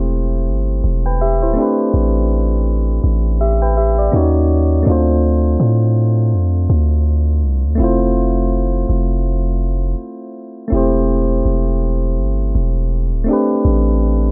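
A deep, sine-toned 808-style bass holds long, decaying notes up front through this moody, sensual R&B excerpt in A minor, moving at 82 BPM with a light swing on the sixteenths and tuned slightly sharp to A4 = 445 Hz. Soft, round electric-piano-like synth keys with a detuned, chorused shimmer and a filter sweep carry the harmony from C6/E through Am11, D#m7, Dm7 and Fmaj7. The production is dark and low-pass filtered, with little reverb, keeping both parts close and intimate for the full 14.3 seconds.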